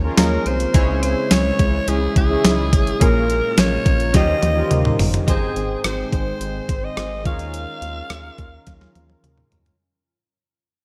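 A straight 4/4 pulse at 106 BPM drives this uplifting, nostalgic slice of 1980s-style pop, set up front by a clean 12-bit digital drum machine with a thumpy kick, medium-tuned snare, rim click, hi-hat, tambourine and toms, overdriven and re-recorded in a large room, with drum fills at 4.1 and 8.7 seconds. Beneath it a rubbery square bass bounces with a hollow, resonant filter pluck, while chorused retro synth keys add glossy, detuned accompaniment over a shimmering pulse-width pad that holds sustained chords very quietly. Analog synth brass, fat and nasal with chorus and delay, punches stabs from the background. A raspy, gritty alto saxophone carries the melody with pop-style vibrato from 0.2 seconds, and a woody marimba struck with hard mallets traces a very quiet, dry second line until 5.0 seconds. The harmony moves from Eb9sus4 through Dbm, Bbm7 and Eb13 to Abmaj7 before returning to Eb9sus4, and the bright digital production, bathed in moderate plate reverb, fades out from 5.3 seconds as the passage is cut from a longer piece.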